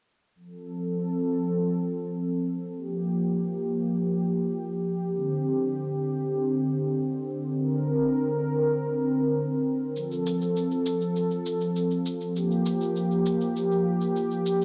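A moderate echo-chamber reverb surrounds this short folktronica piece, which is cut from a longer work and gives its parts a soft, roomy halo. A smooth, detuned sawtooth pad sits up front from 0.4 seconds, holding sustained chords with a soft attack, long release and a gentle chorus shimmer. The harmony moves through F, Gm7, Csus2 and Bbadd9 before returning to F and Gm7, settled in F major at a straight 100 BPM in 4/4, tuned to A4 = 442 Hz. At 10.0 seconds an electronic shaker joins, close and tape-toned, with the slightly boxy character of a small room, and both parts carry on to 14.6 seconds. The mood is delicate and warm, an unhurried glow of held chords with a light pulse added late.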